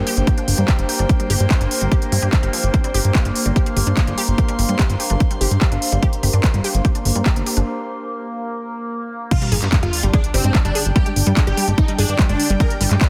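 An overdriven, heavy electronic kick sits up front in this alien, hypnotic psychedelic trance excerpt, alongside a punchy, funky analog bass, a techno kit of crash, handclaps and smooth hats, a sustained drone with moving overtones and phaser, a lush detuned unison pluck riff in the background with tape colour and dub echo, a soft breathy pad, and a very quiet squelchy blip pluck, until a break at 7.7 s gives way to a drop at 9.3 s where a huge, thick supersaw melody with sidechain pumping and a faint sub drop arrive.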